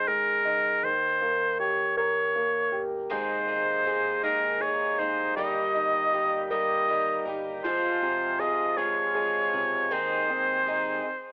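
A clear oboe with light vibrato opens this swaying, heartfelt pop excerpt in 6/8 at 53 BPM in Ab major, singing a classical-style solo melody up front over a polished grand piano and a dark, round fingered electric bass in the background; at 3.1 seconds a reedy tonewheel organ with key click and a slow rotary speaker joins alongside a bright, full-bodied jumbo acoustic guitar picking arpeggios through an analog delay; the oboe, piano, organ and guitar carry a cassette-tape coloring within a home-recorded, telephone-like sound with light reverb, until the music stops at 11.0 seconds.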